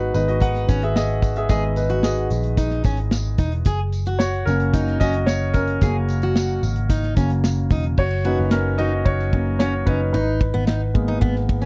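A straight 4/4 groove carries this hopeful, piano-driven pop excerpt, where a dark, mellow concert grand sits up front and takes the lead across both sections over a round, foam-muted picked electric bass. A full-bodied fingerpicked steel-string acoustic guitar repeats a riff while a smooth, rolled-off drum kit with a tight kick and ride, hi-hat and crash keeps time, and a jingly, band-limited tambourine sits in the background until 7.6 seconds. The sound is dry and close in a 1970s studio manner, moving from G#m to F# and settling on G#madd9 near 10.1 seconds.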